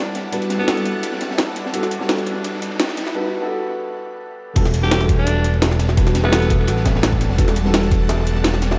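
A felt-muted upright piano with tape echo and a shimmering, granular ambient pad open this soulful, lush liquid drum and bass excerpt in E minor at 170 BPM, where a gritty, pitched-up jungle sampler-style kit and a crunchy breakbeat kit carry the pulse, a faint riser sits behind the build-up and filter sweep, and after a brief break the drop at 4.6 seconds brings an overdriven knocking kick, a smooth, up-front synth bass, distant high-tuned bongos and the return of a raspy alto saxophone with delay, first heard briefly at 0.6 seconds, all set in a dark concert-hall reverb.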